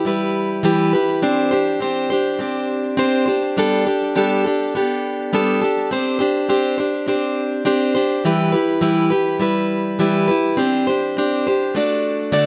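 A picked, plugged-in steel-string acoustic guitar carries this short pop clip entirely on its own, sitting up front in the mix with audible finger squeaks. The mood is easy-going and heartfelt, moving at 103 BPM in 4/4 with a gentle 16th-note swing. Spanning D3 to D5, the guitar works through a progression of Em, Csus2, Gadd9, Csus2, Em and Csus2 again, before turning to D at 11.7 seconds. A digital delay trails the guitar's notes, and a light reverb places the performance in a concert-like space. The fragment runs 12.5 seconds, cut from a longer piece.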